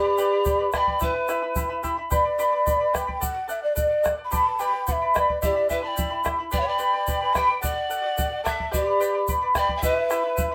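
In a straight 2/4 at 109 BPM, this festive yet melancholic Andean folk excerpt sets a breathy, hollow large quena with vibrato on the melody over shimmering, fingerpicked double-string charango moving through G, Em and D, while a bright, reedy, close-miked pan flute carries a second line that drops out at 1.8 seconds and returns at 5.4 seconds, a grainy egg shaker and round, dry bombo keep time, and the band plays live together in a moderate studio room.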